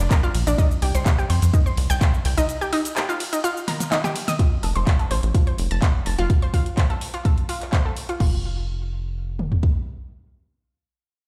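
This progressive house excerpt has a hopeful, expansive mood, with a straight 4/4 drive. A tight, driving sequencer bass sits up front in the low register, its sawtooth and square-wave tone shaped by a filter pluck, a moving notch, a fast attack and a decaying tail, and it pumps through sidechain compression. The drums come in two layers: a punchy, tape-warm kick with toms sits up front as the loudest element, while a lighter electronic layer adds a fat snare, metallic hats, handclaps, shaker, ride and crash. Above them, an analog pluck spins arpeggios in a round, nasal, wave-folded tone that is warm and bright, thickened with chorus and delay and also pumping to the sidechain. The opening drop moves from Bb to Cm and then into a break on Ebadd9, capped by a drum fill before F arrives at 4.4 seconds. The sound has a light reverb and a stony, bare-room quality, as if it were played through a big sound system, and the harmony drops out at 8.2 seconds while the bass and kick carry on briefly before the cut.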